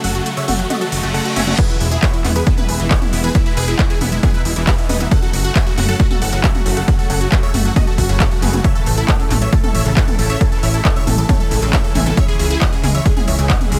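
A straight 4/4 pulse drives this euphoric, uplifting trance fragment. From the outset, a tape-tinged techno kit of crash, handclaps, smooth hats and toms plays alongside a funky wave-folded analog bass, a huge detuned supersaw lead melody with phaser and delay, a lush chorused unison pad and bright background unison pluck arpeggios with dub echo, all pumping under sidechain in a digital ambience. A riser and reverse cymbal build until a punchy, up-front electronic kick drops in at 1.6 seconds.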